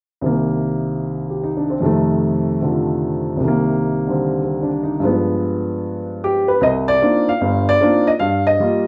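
A moderate studio reverb surrounds a woody, open upright piano sitting up front in this short, smoky fragment of swinging solo jazz in 4/4, the piano ranging from G1 to F5 as it moves through Cm7, F7 and G7b9 before turning at 6.6 seconds to Cm11 and Gm7 and breaking off at 8.9 seconds.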